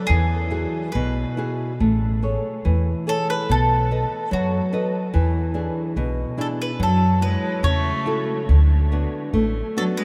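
A fingerpicked nylon-string guitar, small and up front, opens this mournful, passionate fado-style ballad at 71 BPM in a rubato 2/4, joined almost at once by a picked bowl-back mandolin melody with doubled strings and a woody, thumpy pizzicato upright bass, while a biting, distant bowed cello with light vibrato adds a second line from 6.8 seconds, all bathed in the huge reverb of a vast, echoing space as chords move from Eadd9 through B7 and F#m7 to D6 in this excerpt.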